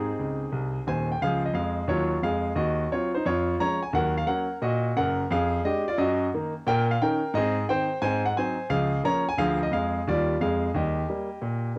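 A clear concert grand piano carries this short stride jazz excerpt alone, its deep bass and smooth tone sitting up front with a vintage cassette tint. The mood is swinging and playful, moving at 176 BPM in 4/4 with a lilting swing on the eighth notes. After a brief fill in the opening second, the piano settles into a longer passage from 1.2 seconds, working through chords such as Db, Ebm7 and diminished passing harmonies. The key begins in Db major and shifts toward Ab major from 6.7 seconds, landing on Ab and Ab7 before closing on Eb. The sound is that of a home cassette recording, with light, small-room reverb giving the instrument an intimate, close presence.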